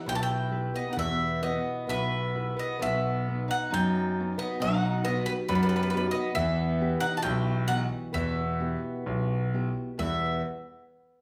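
The recording has a wet studio reverb around a small band playing live together in one room, heard in a short section cut from a longer piece. It is a slow, longing fado-style ballad in E harmonic minor at 66 BPM in 2/4, with a rubato feel that lets the mournful phrases breathe. A bowl-back mandolin sits up front with the bright, picked melody, its double strings ringing high above the band. Beneath it, a fingerpicked twelve-string acoustic guitar adds a shimmering, octave-doubled second line, while a dark, full-bodied nylon-string guitar fingerpicks the accompaniment with the occasional finger squeak. A clear concert grand piano, also up front, carries the bass with long sustain and audible action noise. The harmony moves from E minor to B at 2.8 seconds and returns to E minor at 6.4 seconds.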